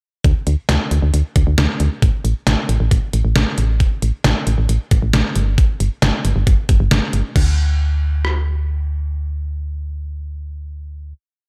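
A short, complete synth-pop piece at 135 BPM in 4/4 with a straight feel, its mood both wistful and bright. A detuned 8-bit digital drum machine sits up front with a sampler-style character, a thumpy kick and a fat snare, joined by hi-hat, rim click and crash cymbal in a steady drum-machine beat that sounds re-recorded in a large room. Alongside it, a punchy, round FM bass with a fast attack and dark, decaying tone runs as a sequenced line between G1 and D2, also placed up front. The verse runs from 0.2 to 7.4 seconds, and the drums drop out at 8.3 seconds while the bass carries the final note until 11.1 seconds. Light reverb gives the mix a touch of space around its digital sound.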